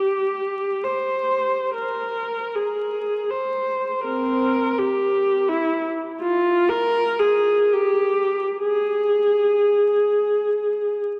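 A single bowed viola carries this brief classical excerpt, its dark, woody tone sung with vibrato and played sul tasto across a range from C4 to C5. The piece unfolds in free time with an expressive, meditative and mournful character, the lone player sounding from 0.0 to 11.0 seconds. The viola sits up front, yet it carries a distant quality, wrapped in a wet cathedral reverb with a 4.1-second decay. Over the whole recording lies the patina of worn old cassette tape, with warbly pitch drift and vinyl crackle that give the solo line an aged, fragile air.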